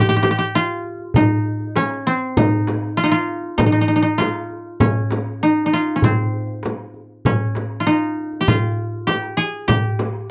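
A woody, fingerpicked koto sits dry and up front, carrying a melancholic, hypnotic melody between C4 and Ab4 through this excerpt of an Arabic maqam ensemble piece at 98 BPM in a straight 4/4, tuned to A4 = 435 Hz, while a crisp metal-shell darbuka played with soft hands sounds distant in a large room and a small, bright frame drum rings in a small room, both entering at 0.2 seconds within a close 1970s-style studio sound touched by light reverb.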